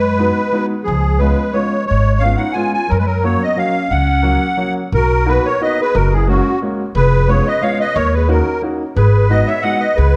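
A reedy, shimmering musette accordion carries the melody of this whirling, charming musette waltz in swung 3/4 from the first beat, joined at once by a smooth-topped, classical-style clarinet on a second line and an up-front, woody pizzicato upright bass. A clear upright piano accompanies from 0.2 s with long sustain, and the whole dark production sits in a moderate recital-hall reverb as the harmony moves into a new section at 4.9 s in this passage cut from a longer piece.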